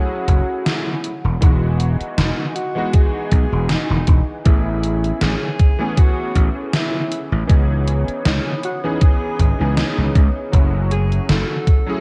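An overdriven, thumpy electronic kick and a gated 80s drum machine's hi-hat and gated-reverb snare start at 0.3 s with a lightly swung sixteenth-note feel, alongside a growly, punchy slap bass up front in this woozy, nostalgic vaporwave excerpt cut from a longer piece. A clear, vintage electric grand piano with chorus and delay plays chords moving from F#m7 through Emaj9, Amaj7 and C#m9, while a dark, detuned, warbling pad sustains softly in the background. Over it all, a distant, breathy alto saxophone carries an intimate, whispered jazz melody with scooped notes and tape echo, and the whole mix has a lo-fi cassette sheen.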